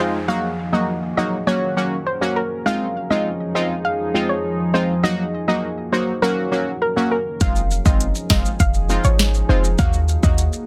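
A dense, heavily limited dancehall cut with light reverb and a tough, sultry mood opens on a punchy, nasal synth brass stab, a mellow, round pluck melody with tape echo and a warbling, vintage ambient pad pumping under a very quiet downlifter, before an overdriven electronic drum kit with a deep kick, a boomy clean 808-style bass and close, bright maracas arrive at 7.4 s.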